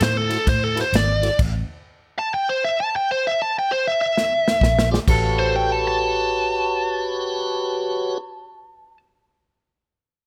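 The recording has a light reverb and a gritty, soulful feel, a short excerpt from a longer electric blues shuffle in a swung 4/4. A biting, bright lead guitar with overdrive carries the melody from start to finish, picked and up front. A natural country drum kit, airy and polished with a punchy kick and a medium-tuned snare, drives the opening alongside a dark, round, foam-muted fingered bass and a piping, scooped tonewheel organ with key click and a slow rotary speaker. The bass and organ drop out for a stop between 1.4 and 4.6 seconds, and a drum fill closes the first section as the bass and organ return. From 5.1 seconds a second electric guitar through a small old amp adds a lo-fi, slightly broken-up line with harmonic tremolo, while the chords move from D9 and A5 through Bb9 to A13.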